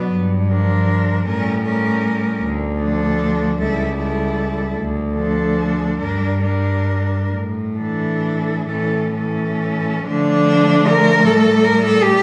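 Yearning and solemn, this short excerpt from a longer classical piece for cello ensemble moves in a slow, rubato 6/8 at roughly 43-55 BPM in dotted quarters, set in D minor. Four bowed cellos play throughout, each a single player with vibrato: the melody cello sounds warm and expressive, sliding between notes with portamento from a distant placement, while a rich, smooth second line moves alongside it, also heard from afar. An even accompaniment cello holds the middle register, and the bass cello, focused with a smooth top and placed up front, anchors the texture from its low C#2. The harmony leans on Gm7 and A7b9 before settling on Dm, pausing on Asus4, and turning toward a fresh passage at 10.0 s that closes on Gsus2/A. A wet stone room reverb with a 1.4-second decay surrounds the ensemble, lending the playing a solemn, churchlike gravity.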